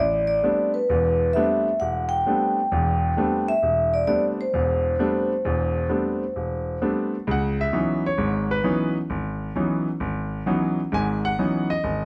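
A vibraphone struck with medium mallets and a grand piano open this short cut from a longer jazz piece together, setting a spiritual, searching mood over a swung four-beat pulse. The vibraphone carries the melody in a middle-to-high register, its tone metallic, ringing and airy with the motor off. Beneath it, the up-front piano supplies the accompaniment across a broad span from deep bass to upper treble, its sound clear, smooth and vintage, with short sustain. The harmony rests on an Am11 chord before moving to C#m11 as a second section begins, and the vibraphone drops out at 6.8 seconds, leaving the piano alone until the close at 12.1 seconds. Close, detailed microphones capture both instruments inside a moderate large-studio reverb.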